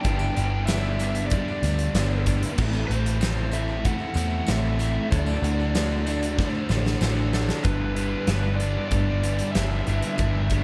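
A round, foam-muted picked bass sits up front in this hazy, wistful shoegaze and dream-pop rock at 95 BPM in G major, beneath a huge big-room acoustic kit with a punchy kick, a bright, double-tracked overdriven guitar riff, a thick, dark fuzz guitar with subtle chorus and a lo-fi, slightly broken-up guitar with reverse reverb tucked in the background, a cranked-amp lead melody trailing delay, and a very quiet, jingly tambourine that drops out at 7.6 s, as the chords move through G6, Am and Dadd9 before a drum fill from 6.4 s brings back G6 at 7.7 s in a dreamy mix soaked in lush hall reverb.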